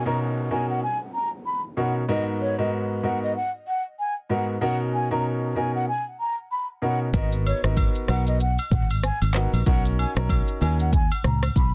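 A lightly swung afrobeats groove in 4/4 arrives at 7.1 seconds, when a produced afro-pop drum kit with a deep kick, handclaps, rim clicks, shaker and toms enters together with a dark, round, foam-muted fingered electric bass, both up front, with acoustic agogo bells carrying a live-room feel soon after. Before that, a clear, polished baby grand piano lays down mellow seventh chords while an airy, hollow concert flute sings the tongued, vibrato-touched melody through digital delay, and a faint electronic downlifter sinks away in the background over the opening 2.1 seconds. The hypnotic, mellow feel sits in a dry, dense and heavily limited modern mix, with a touch of soft clipping on the snare.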